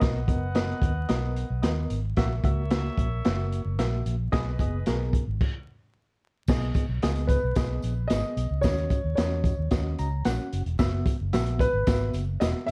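A dark, warm production with vinyl crackle, light reverb and a small-room ambience frames this cut from a longer uptempo 1960s-style soul piece, running at 111 BPM in a straight 4/4 with a warm, danceable mood. Up front, a crunchy, saturated breakbeat kit of tight kick, medium-tuned snare, hi-hat and dark crash cymbals sits alongside a round, foam-muted fingered electric bass. A reedy, worn and slightly out-of-tune electric piano carries the accompaniment through its built-in speakers with a fast tremolo, while a warm grand piano states the melody and a distant, roomy jazz-style horn section adds a second line early on. The chords move from Bmaj7 through F#7/A# and B6 toward D#m7 and F#7sus4. A stop arrives at 5.4 seconds, a jingly tambourine enters in the background at 6.5 seconds, the grand piano melody returns at 7.3 seconds, and the electric piano plays a fill at 9.7 seconds.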